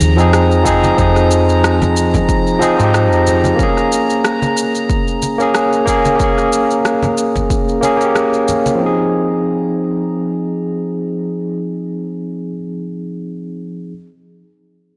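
A barky, up-front tine electric piano with tape echo sounds from the start of this sunset chillout piece in F minor at 92 BPM, together with a growly, round fretless bass, overdriven electronic shaker and rim click, dry congas in the background, and a glassy, slowly drifting harmonics texture. A punchy, layered electronic kick arrives at 0.7 seconds, the bass drops out at 3.5 seconds, and the smooth, lightly swung groove moves from Fm7 to Bbm7. The percussion and texture stop at 8.8 seconds, leaving the piano alone in a lush hall reverb on this blown-out, overdriven recording cut from a longer piece.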